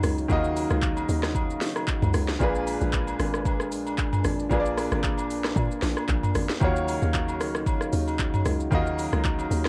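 Amapiano in Eb minor at 114 BPM, hypnotic and late-night, with a lightly swung 16th feel and a dry, home-taped cassette character, cut from a longer piece. An up-front electronic afro-pop kit with a deep kick, sharp snare, crisp hats, handclaps, rim clicks, shaker and toms carries a cassette-tape grit. A tight, punchy FM log drum bass with a noise layer, a fast attack and a decaying tail sits low beneath a clear but worn grand piano and a mellow, close-miked French horn section, whose sustained chords, touched with light vibrato, pump with sidechain compression. Distant agogo bells enter at 0.3 seconds in the background, and the harmony moves from Ebm7 to Bb7b9 and back to Ebm7.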